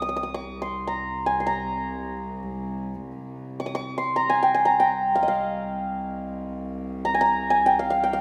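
In free time, this soulful, longing fragment of a Persian modal ensemble piece sets a bright, shimmering hammered santur melody up front, ringing between Eb5 and Eb6, over a low, close chamber cello section that holds a rich, reedy gut-string drone on C2 in period style, all under light reverb for the full 8.2 seconds.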